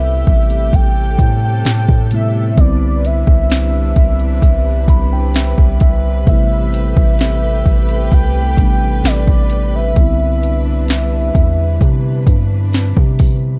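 An overdriven, up-front contemporary R&B drum kit with a soft kick, sharp snare and hi-hat anchors this moody, longing piece at 65 BPM in A minor, beneath a deep, sine-toned 808-style bass, a velvety sawtooth synth lead with chorus, vibrato and portamento carrying the melody until 12.7 s, a mellow tine electric piano that adds a fill from 4.4 to 6.3 s, and a dark, bowed string section holding soft sul tasto chords over Am9 and Cmaj9 in a dry, warm production.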